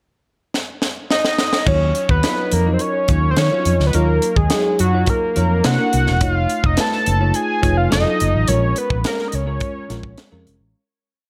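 Slick and urban, this polished 1980s jazz-funk pop piece in Eb minor moves at 106 BPM in a straight 4/4, opening with a crisp drum fill from a tight funk kit with a high-tuned snare and gated reverb at 0.5 seconds, before a fat, detuned analog lead with vibrato states a motif-based melody, a sparkling bell-like FM electric piano adds syncopated chords under lush chorus, and an agile, round fretless bass with chromatic approach notes drives the verse from 1.7 seconds through chords such as Ebm9, Faug7 and F7b9 until the fade-out that begins at 8.5 seconds.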